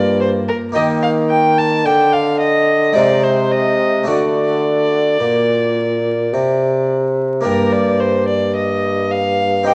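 A worn, warbling old cassette sound with vinyl crackle and drifting pitch frames this short cut from a longer baroque-style sonata movement in G minor, set in a moderate recital hall reverb. At a grave, flowing 54 BPM in 3/4, a rich, reedy violin with light vibrato and gut-string tone sings the melody up front, while a mellow bassoon carries the bass and a brilliant, plucked harpsichord with octave strings fills in the continuo. The harmony moves through Eb, Ab over C and D before settling on G minor at 7.4 seconds.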